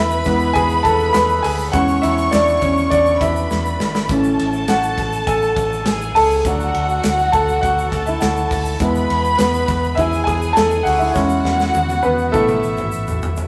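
A straight four-beat groove carries this anthemic, uplifting piano-driven pop passage, cut from a longer piece. The grand piano leads throughout as the featured soloist, its warm, polished tone sitting present and up front. A smooth, bowed violin section with vibrato adds a close, even second line. Underneath, a dark, round, foam-muted electric bass holds the low end, while a grainy, bright egg shaker sits in the background. The acoustic drum kit has a punchy kick, a medium-tuned snare and a pumping room sound, with fills at 3.5 seconds and again from 11.2 seconds to the close. The harmony moves from E through C#m/E, A and D before returning and landing on Asus2, all heard in a rough rehearsal-room recording with a wet reverb.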